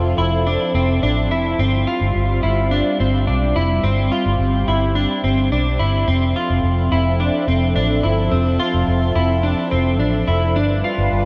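This ethereal, floating dream pop excerpt opens with a phased analog pad, a clean electric guitar and a vintage muted electric bass together, moving at 107 BPM in a straight 4/4 around F lydian. The pad holds sustained chords with a swirling, evolving sawtooth tone, detuned and slow to bloom, colored by phaser and chorus. Up front, the guitar picks dark, clean arpeggios through analog chorus and delay, while the foam-muted bass sits round and punchy beneath. From 6.3 to 9.6 seconds a worn celesta adds a very quiet, bell-like texture from soft felt hammers, sweet and slightly out of tune. The harmony drifts from Fmaj7 to G7sus4, back to Fmaj7 and on to G7, all bathed in a huge ambient reverb within a dark production.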